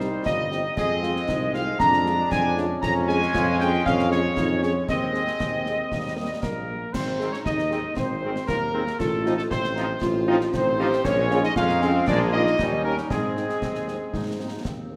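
A mellow, up-front trumpet section carries the melody of this proud, rousing military-style march for wind band, its tight, vintage tone touched with light vibrato. Beneath it, an airy, hollow flute ensemble sits very quietly with a soft attack and straight tone, while a close-miked woodwind section with vibrato and a distant, roomy euphonium add second lines in the background. A dark French horn section supplies accompaniment, a bright trombone section holds sustained chords, and a warm, punchy tuba anchors the bass. Concert snare drum, concert bass drum and clash cymbals, with a shadowy cymbal colour and a small-room sound, keep the straight 2/4 march feel. The band sits in a lush scoring-stage reverb, and this fragment of a longer piece moves into its second section at 6.9 seconds.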